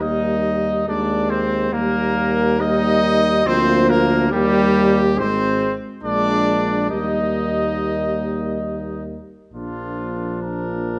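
A classical brass quintet excerpt in Eb major, noble and triumphant, moving at 69 BPM in a rubato 3/4 and cut from a longer piece. Two trumpets carry the music, one up front with the melody and the other playing a second line, both sounding distant and roomy, while a mellow, close-miked French horn sits in the background and a vintage-toned trombone with light vibrato fills in the accompaniment. A bass trombone, also lightly vibrato, anchors the low end in a wet recital hall, and the harmony settles around Eb before turning to Bb at 9.5 seconds.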